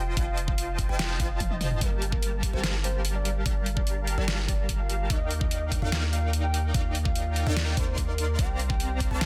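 A deep, sine-toned 808-style bass sits up front and pumps against a knocking electronic kick in this bittersweet, emotional future bass excerpt at 146 BPM in half-time G minor, tuned to A4 = 436 Hz, where an overdriven dubstep kit with a deep snare and bright hats joins at 0.2 s and plays a fill at 1.4 s, a punchy, detuned supersaw stab plays a riff beneath a soft, round, dark octave-layered synth lead with chorus, cassette-tape colour and delay that carries the melody over F9, Gm9, Ebmaj9 and C9sus4, and the dry, dense, heavily limited master keeps the whole mix close.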